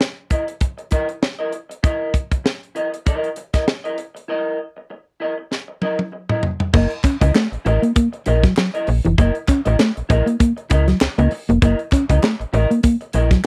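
A bright, twangy electric guitar with subtle chorus and a tight, high-snared funk drum kit open this playful 98 BPM F# mixolydian funk excerpt with a lightly swung sixteenth feel, and after a drum fill at 5.5 s, a dark, fingered guitar riff at the edge of break-up and an up-front, snappy slap-like FM bass join at 6.7 s, while a hollow group handclap sits in the background of the dry, close 1970s-style studio sound.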